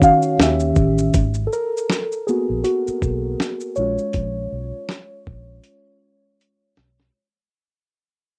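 A rough home-demo mix with cassette-tape character and a moderate studio ambience frames this melancholic, nostalgic lo-fi hip hop excerpt at 80 BPM in 4/4, with a swung 16th feel moving through Eb7b9, Abm9 and Bbm7. Muted, felt-like synth keys sit up front, soft and intimate, coloured by chorus, cassette wear and plate reverb. They take a solo from 1.1 s as the fade-out begins, while a dusty sampler-style drum kit supplies a thumpy kick, a fat overdriven snare, hi-hat and shaker. A dark, round, foam-muted fingered electric bass enters at 0.4 s, and the drums close with a fill at 5.6 s.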